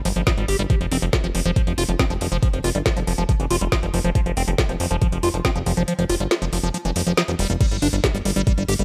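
Set in a light reverb, this driving, psychedelic trance fragment at 139 BPM in 4/4 moves between G5 and F5 power chords, with a squelchy, resonant liquid acid bass riff running through phaser, dub echo and sidechain pumping over a punchy, funky analog bass built from sawtooth, square and triangle tones with ring modulation and a filter pluck. Overdrive roughens both the up-front knocking electronic kick and a garage drum kit of woody snare, metallic hi-hats and crash cymbal. The kick drops out at 5.9 seconds, and the track hits its drop at 7.6 seconds.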